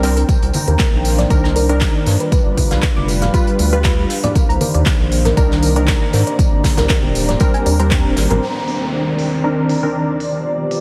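Warm and deep, this deep house excerpt moves at 118 BPM in C minor with a light swing on the sixteenths, cycling through Cm9, G7 and Abmaj9#11. An up-front, layered electronic kick anchors the groove alongside smooth, filtered hats and handclaps from a house kit. A small-room acoustic soul kit adds a rolled-off snare, hi-hat and tambourine, and low-tuned congas ring under soft hands in the background. A round, dark analog bass pumps with the sidechain, mellow detuned analog keys play chorused stabs through a low-pass filter and dub echo, and a gentle pluck spins arpeggios with tape echo. Sustained chords come from a moody sub-octave analog pad with 12-bit sampler grit, entering at 0.6 seconds, while a cloudy granular pad drifts beneath with its own reverb. By 8.4 seconds the bass, kick, soul kit, pluck and congas have dropped out, leaving the pads, keys and house kit as an electronic downlifter carries the cut to its end at 10.8 seconds.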